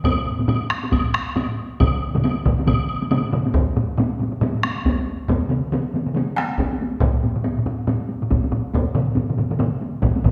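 A reverberant hall sound frames this powerful, ceremonial Japanese taiko drum ensemble excerpt at 138 BPM in a swung 4/4. Three up-front taiko parts struck with hard sticks drive it: one vintage and band-limited, one close and dry, and one compressed and saturated. A fourth taiko, played with heavy sticks and just as squashed and gritty, joins at 1.8 s, while a distant, woody woodblock sounds only until 3.2 s.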